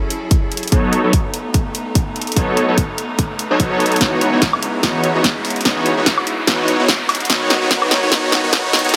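Lush and bittersweet, this future bass build-up has a half-time, lightly swung feel and rises through a filter sweep on huge, detuned supersaw chords that pump against the beat and trail a dub echo. A bowed string section with light vibrato and 12-bit sampler grit holds sustained chords in the background, joined by a very quiet riser, a barely audible 808-style bass, and punchy, up-front drums: an electronic kick plus hi-hat, snare and woodblock that break into a fill at 4.0 seconds. The mix sits in a moderate, lush hall reverb.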